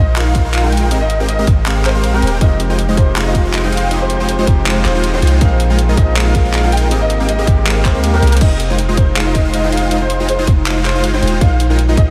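A clear concert grand piano melody with tape echo and a deep, boomy 808-style bass open this bittersweet, emotional future bass drop at 160 BPM in half-time F minor, joined at once by lush, detuned supersaw chords, a hard-clipped electronic kick and an overdriven pop kit of handclaps, hi-hat and crash, with a gritty, barky electric piano murmuring in the background from 2.4 seconds until 8.4 seconds, when, following a drum fill at 8.2 seconds, soft, round pluck arpeggios take over, the pitched parts pumping against the kick in a dreamy mix soaked in huge ambient reverb.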